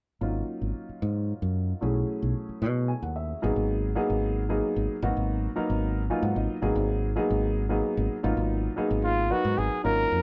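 A worn-sounding baby grand piano with long sustain and a round, punchy fingered electric bass open this funky, slick jazz excerpt in 6/8 at 75 BPM in G# dorian, the piano adding fills at 2.6 and 5.8 seconds over suspended thirteenth chords that settle onto G#m7. A breathy solo trumpet with light vibrato and a soft attack enters up front at 9.0 seconds, all heard as a band playing live in one room with light reverb.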